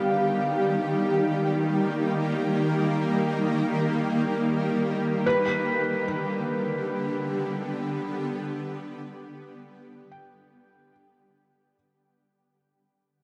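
Floating in free time, this luminous, serene ambient fragment pairs a shimmering, detuned pad of sustained chords, bright and up front with chorus and an octave-up glow, against a felt-muted upright piano whose soft, intimate arpeggios carry tape echo and audible action noise. Both sit inside a huge, wet reverb with an 8.5-second tail, while the harmony moves from Eb to G at 5.3 seconds. Cut from a longer piece, it begins fading out at 3.1 seconds and dissolves by 11.7 seconds.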